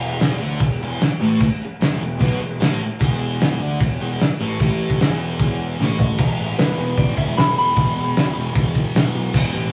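A cloth-damped, thuddy drum kit sits up front in this swaggering, rowdy garage rock excerpt, its fat snare, tight kick and dark cymbals hitting with a rolled-off top alongside hi-hat, crash and toms at 151 BPM in a straight 4/4. A thick, double-tracked fuzz guitar drives the riff from the start, distorted and picked over an E5 chord. Beneath it, a picked electric bass adds an overdriven, growly fuzz with a bright, direct-and-amped edge. A drum fill from 5.8 to 6.2 seconds leads into a new section, where an electric slide guitar, slightly broken-up and compressed, carries a short melody from 6.6 to 8.7 seconds. The whole thing sounds like a rough rehearsal-room take, with warm saturation and a moderate stone-room reverb giving it a loose, live feel before it cuts off as part of a longer piece.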